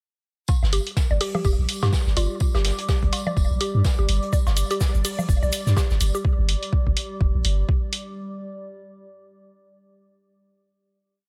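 A soft, tape-warm electronic kick holds a four-on-the-floor pulse at 125 BPM in 4/4, with a 58% swing on the sixteenths. Up-front programmed hats carry a backbeat, and a distant, roomy brush kit plays a looped breakbeat with edits under a rolled-off top. Dry analog cowbell, woodblock and conga clicks and blips run in cross rhythm through digital delay, and a grainy cabasa joins in the background from 4.3 seconds with hand-played sixteenths. Under this, a deep, punchy sine sub bass with a pitch-drop attack rolls in a staccato groove and pumps against the kick. A woody, round FM pluck repeats a 9-step loop that drifts against the bar, and a second, warbling mallet-like pluck adds short phrases between 1.2 and 2.6 seconds. This short, hypnotic and quirky minimal techno piece is rounded out by a nostalgic, lo-fi pad of detuned square and triangle waves with slowly shifting chords, plus a faint gated texture holding a single high note in the background.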